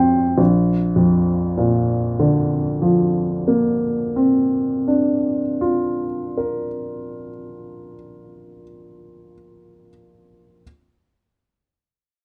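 Close, detailed microphones and light reverb give this short fragment of a longer impressionist solo piano piece a polished sound, with the baby grand sitting present and up front. Dreamy and serene, it drifts at a very slow 37 BPM in 5/4 with a rubato feel, opening on a Bbadd9 chord at 0.4 seconds. The warm piano, tuned to A4 = 442 Hz, spans Bb1 to D7 across its 10.6 seconds.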